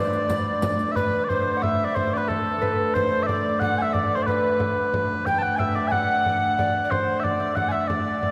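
A wet cathedral reverb of about 4.3 seconds fills this festive, rustic medieval dance in D mixolydian at 182 BPM in 3/4, where sweet, mellow small bagpipes carry the melody up front, a breathy, chiffy, unsteady tenor recorder with vibrato and a shimmering hammered dulcimer in the background add second lines, a nasal, reedy hurdy-gurdy holds the drone, and a close, dry frame drum played with soft hands keeps time as bright riq jingles sound briefly at the start of this cut from a longer piece.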